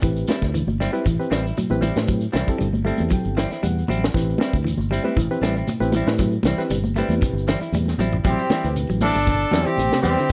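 A punchy trombone with scooped notes takes the melody at 8.3 seconds, joined by a clear, vibrato-laden trumpet on a second line, both distant and roomy over an intense, hypnotic afrobeat groove at 117 BPM in A dorian, resting on Am7. Beneath them, a round, up-front fingered bass and a tight funk kit with a high-tuned snare drive the pulse, damped congas sit in the background alongside a grainy shekere, and a barky, reedy electric piano accompanies and adds a fill around 2.6 seconds. Two dark, clean semi-hollow guitars fill out the texture, one playing arpeggios and the other spring-reverb stabs, with a drum fill at 8.0 seconds leading into the horns in this short cut from a longer piece.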